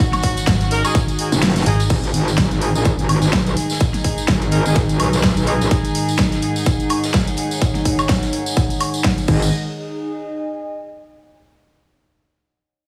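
Bouncy and gritty, this bass house clip opens straight into a drop, riding a swung sixteenth-note feel in 4/4. An overdriven electronic kick sits up front, punchy and layered, with a big-room dance kit supplying a huge snare, hi-hat, crash and woodblock, while a jingly tambourine and a very quiet acoustic rock kit fill in behind. A dark, metallic FM bass hits from 0.5 s, a mellow, distant horn section throws tight stabs through a dub echo from 0.7 s, and a distorted, chorused wobble bass takes over the low end with an aggressive, metallic wobble, both basses pumping against the kick. A band accent lands at 1.4 s as the kick drops out briefly. Underneath, a dark, floating string section holds bowed sul tasto chords through a low-pass filter, and a nostalgic, lo-fi pad with a warbling, detuned character lingers alone after the rest stop, carrying the cut to 11.4 s in a small, lightly reverberant room.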